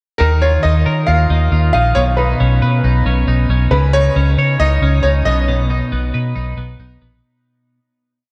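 Nostalgic and breezy, this short jangly indie pop piece moves at 136 BPM in a straight 4/4, passing through Ebsus2, Cbadd9, Dbsus2 and Cb as a single pre-chorus. A bright upright piano sits up front with a woody, intimate tone, audible action noise and short sustain, carrying a motif-based melody of song-like phrases touched by analog delay. A clean, twangy twelve-string electric guitar rolls out fingerpicked arpeggios, compressed and given a subtle chorus. Underneath, a vintage muted fingered electric bass drives steady eighth notes with a dark, round, punchy, foam-muted sound that also sits up front. The dreamy mix is soaked in a moderate cathedral reverb, and the music fades out from 5.5 to 7.2 seconds, with the guitar ringing on alone until 7.8 seconds.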